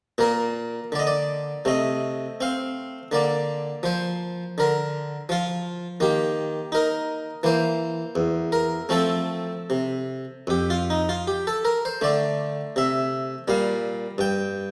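Bathed in the lush reverb of a recital hall, this brief passage cut from a longer baroque-style suite movement features a solo Italian-style harpsichord with one set of strings, heard up front with a round, plucked tone, playing a radiant, flowing line in Bb major at about 77-86 BPM in 4/4 with a rubato feel.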